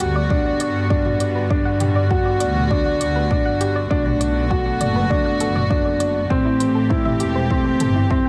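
A steady, straight 4/4 pulse at 100 BPM comes from a deep, overdriven electronic kick that enters at 0.3 s, while an overdriven electronic drum kit with smooth hi-hats and toms sits in the background until 7.9 s, both carrying a touch of studio ambience. This luminous, hopeful piece of piano and strings electronica, cut from a longer work, sits in G major and moves through Gmaj7, Bm7 and Am7. A woody upright piano plays a short riff in the middle register with delay. A dark studio string section holds soft-attack, sul tasto chords. A lush, bowed symphonic double bass section with vibrato anchors the low end, and both of these string parts carry sidechain pumping. Tucked in the background, a mellow, round synth pluck with a sub octave and a decaying filter spins arpeggios, treated with chorus, delay and sidechain pumping, and the whole mix sits in a light studio reverb.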